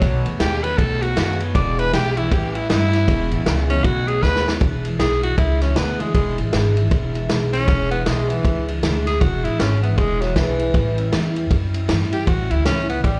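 A raspy, gritty tenor saxophone opens this rowdy, upbeat rockabilly excerpt with an up-front solo, its scooped notes and light vibrato carried on tape echo and slapback echo over a swinging beat. Beneath it, a twangy, slightly broken-up electric guitar plays a lo-fi riff through a small old amp with subtle chorus and slapback, tucked in the background, until it drops out at 4.6 seconds just after a drum fill. From there the saxophone carries the melody on, while a bright jumbo steel-string acoustic guitar, present from the start, keeps picking out accompaniment with audible finger squeak and its own slapback echo. An upright bass gives woody, thumpy pizzicato on gut strings, and a vintage kit with a punchy kick, medium-tuned snare and ride cymbal sits up front with a rolled-off top. The performance sounds like a live gig heard through the venue's PA and captured on cassette, wrapped in club reverb.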